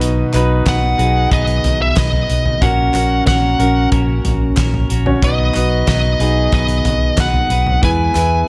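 Anthemic and warm, this short piano-driven pop passage moves at 92 BPM in a straight 4/4 feel in B major, its chords shifting from B to F#/A# and back to B before landing on E. A concert grand carries the accompaniment with an intimate, polished tone, deep bass and long sustain, its action noise audible up close, while a bright, twangy twelve-string electric guitar plays a clean, compressed, picked riff throughout. Underneath, a vintage fingered bass, foam-muted and amped, gives a dark, round low end, and a loose indie drum kit with a punchy kick, fat snare, hi-hat and toms breathes in a pumping studio room. A very quiet group handclap, hollow and close, enters at 0.3 seconds, and at 0.7 seconds a fuzz lead guitar steps up front with a distorted, picked melody in a high register. Light small-room reverb gives the mix a cohesive sense of space, and the passage is cut from a longer piece.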